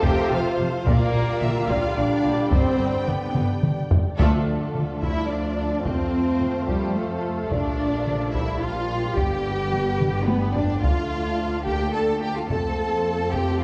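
In a steady 3/4 at 108 BPM with a straight feel, this heroic, epic orchestral film-score cue in D minor is cut from a longer piece and drives forward on a taiko ensemble struck with heavy sticks, with drum fills at 3.4 and 10.0 seconds. The cello section sits up front with a rich, smooth bowed bass under a distant, expressive double bass section, while a lush, very quiet violin section carries the melody from afar and a second violin line with a smooth top stays in the background. Viola accompaniment bends with portamento, and a dark string section, a clear, vintage-toned trombone section and a mellow French horn section hold sustained chords that move through F, Bb6, G and a Dmadd9. At 4.2 seconds, where the second section begins with a band accent, a round, close and dry timpani enters on D3 for under a second. The whole mix sits in a wet scoring-stage reverb and carries the worn, warbling pitch drift of old cassette tape.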